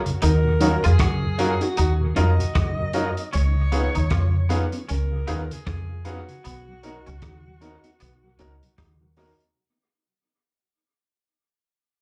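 A short, fading cut from a longer lovers rock reggae piece, romantic and sweet, moving at 77 BPM in 4/4 with a lazy sixteenth-note swing. It opens on a soft, flute-like tonewheel organ turning through a slow rotary speaker with dub echo, joined by a muffled vintage drum kit of hi-hat, punchy kick and rim click, its dull top trailing dub echo. A distant, roomy alto saxophone carries the melody in a jazz style with vibrato and scooped notes, coloured by tape and slapback echo, while a twangy, scooped electric guitar picks a clean riff through ensemble chorus and slapback. Underneath, a deep, round dub bass sits up front and dominates the mix, and from 0.6 s a brilliant, polished grand piano adds short-sustain accompaniment with slapback echo, alongside very quiet, slightly broken-up guitar stabs from a small old amp. The harmony moves from D#m7 to C#7 to Bmaj7, and the whole passage sounds like a live gig heard through the venue's PA, with club ambience and light reverb as it fades out.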